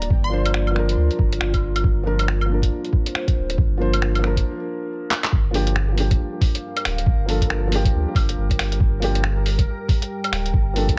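A muffled, thumpy electronic kick drum sits up front in this ghostly, nocturnal future garage excerpt, pitched down and compressed with a tape-soaked, sampler-style grit, while a lo-fi kit of claves, finger snaps, handclaps and hi-hat shares the same dusty character. At 138 BPM in 4/4 with a 60% swing on the 16ths, the groove moves in G minor over a deep, round sine sub bass, also up front, that pumps against the kick alongside the other sidechained parts. A felt-muted upright piano carries the accompaniment, soft and intimate with 12-bit sampler grit, low-pass filtering and delay, beside a dark, detuned analog pad of layered waveforms holding slow-attack chords under a subtle chorus. The opening moment brings a brief glassy, crystalline wavetable pluck treated with chorus, cassette tape and dub echo. A break arrives at 4.5 seconds, and from 5.3 seconds the harmony shifts from Bb to Gm7 as a filter sweep moves across the piano. 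At 6.7 seconds a reversed, granular texture enters in the background, dreamy and soaked in its own reverb, all within a digital ambience.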